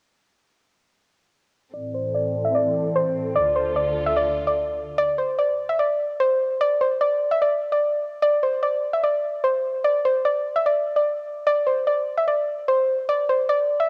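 A cassette home recording with light reverb and a small-room feel opens this melancholic yet hard-hitting hip hop fragment in A minor, moving at 148 BPM with a half-time feel. A soft, round pluck with a dark, detuned edge sits up front carrying the melody through chorus, low-pass filtering and a filter sweep, while a warm, lush, bowed studio string section with vibrato holds quiet sustained chords on Am and Dm beneath it. The strings drop away at 5.0 s, leaving the decaying pluck to carry on alone until 13.9 s.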